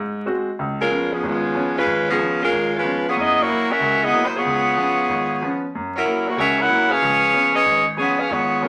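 Brassy and joyful, this swung jazz passage at 186 BPM in Db mixolydian features an up-front saxophone section carrying the melody from 0.8 s with a clear, smooth top and light vibrato, while a quieter baby grand piano accompanies from the start over dominant-seventh changes moving between Db7 and Gb7, all set in a wet studio reverb with vinyl crackle, cut from a longer piece.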